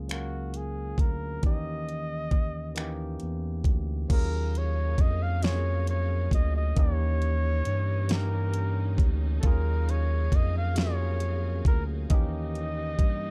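Sultry and late-night, this slow six-eight R&B excerpt pairs a soft-attack flugelhorn melody, full of vibrato and scooped jazz-style notes, with a barky, lightly overdriven tine electric piano, a dark sawtooth synth bass up front, and an electronic drum kit with a knocking kick, fat snare, finger snaps, hi-hat and crash, before a lush bowed string section enters in the background at 4.1 seconds, all in a dry, dark, warm production.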